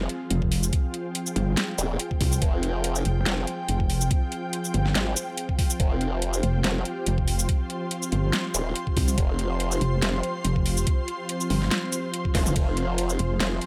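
Set in light digital ambience, this heavy, menacing wobble dubstep excerpt in F minor moves at 142 BPM with a swung half-time feel, as a formant-sweep wobble bass with overdrive and a saturated, pulsing pluck wobble bass entering at 0.3 seconds churn up front beneath a lush, bright sawtooth pad and an ethereal, airy triangle pad that pump with sidechain, while a tape-warm dubstep kit with a huge snare, metallic hats, ride, shaker and toms enters at 0.1 seconds, is joined by a knocking electronic kick from 0.4 seconds, and rolls into a drum fill at 12.3 seconds.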